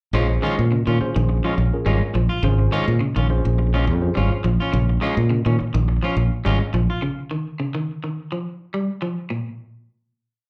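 Heard through a club PA with light venue reverb, this short, driving, funky afrobeat piece rides a one-chord groove, with a round, punchy fingered bass riff up front until 6.9 s, a twangy, picked guitar ostinato with slapback echo carrying on to 9.5 s, a second slightly broken-up guitar strumming funk stabs in upper chord shapes, and a worn, slightly out-of-tune tine electric piano adding lightly overdriven, rootless syncopated stabs only until 4.4 s.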